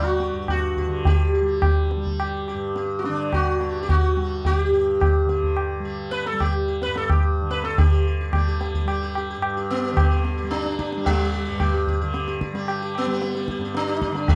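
Hindustani classical music with a devotional, meditative calm in raga hamsadhwani and a triple metre that gradually speeds up, where an up-front, plectrum-plucked sitar sings a bright, buzzing melody ringing with sympathetic strings over a softly plucked, shimmering tanpura drone, while a low-tuned, resonant tabla joins at 0.2 s, all captured in a dry, close 1970s-style studio sound cut from a longer performance.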